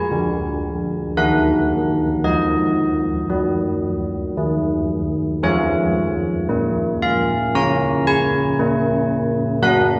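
A classical tune for church bells in Db major at 57 BPM, this festive yet serene excerpt features old church bells alone from 0.0 to 10.0 s, their bronze, clangorous ringing with a minor-third overtone and audible beating, struck by a worn iron clapper, sitting up front across a range from D3 to Bb5, moving from Bbm to Ebm at 1.2 s and Db/F at 5.4 s, all bathed in a wet church reverb within a dark production.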